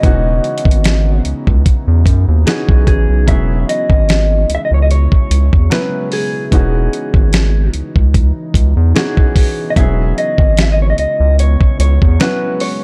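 Contemporary R&B with a late-night, moody air, this short cut from a longer piece sits on a lightly swung sixteenth-note feel in 4/4. A dusty, sampler-style soul kit sits up front, its thumpy kick, fat snare and hi-hat sounding gritty and compressed. Beside it, a round analog bass, equally forward, blends square and sine tones with a wave-folded, evolving character, fast in attack and sustained, dropping out at 12.2 seconds. A clean, fingered electric guitar carries the melody in a mellow, compressed tone touched with delay, while a baby grand piano offers natural, short-sustained accompaniment beneath it. Deep in the background, a full-bodied ambient pad of detuned sawtooth unison and sub octave swells in slowly, treated with chorus, reverb and sidechain pumping, as the harmony alternates between C#m11/E and E69 within a dusky, warm production.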